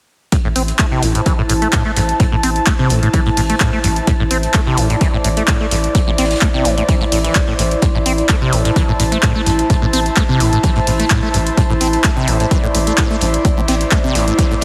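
From 0.3 s, an overdriven, up-front analog kick and a dry, punchy drum machine with handclaps and hi-hat drive this hypnotic, raw acid house excerpt at 128 BPM in A minor with a light 16th-note swing. Alongside them play a squelchy, resonant sawtooth acid riff laced with phaser, tape echo and a filter sweep, an airy, breathy chorused pad, and a very quiet, gritty low-tuned acoustic kit of hi-hat and snare. A deep sine sub bass follows from 0.4 s, with the basses and pad pumping to the sidechain under a lush hall reverb and a heavily compressed, radio-like finish.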